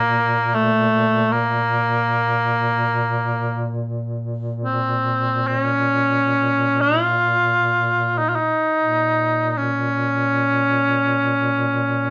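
From the first moment, a cor anglais and a duduk sound together in this solemn, mournful Caucasian folk lament, a 12.1-second passage cut from a longer piece. It moves in free time in Bb harmonic minor, tuned to A4 = 441 Hz. The cor anglais carries the melody up front between A3 and F4, its warm tone shaped by light vibrato, a smooth top and a classical manner. Beneath it, the mellow duduk holds a steady drone on Bb2, sitting lower in the mix, its folk-style vibrato giving the sustained note a gentle waver. Both players perform live in one large studio, where a moderate reverb of about 1.0 s gives the sorrowful line a sense of space.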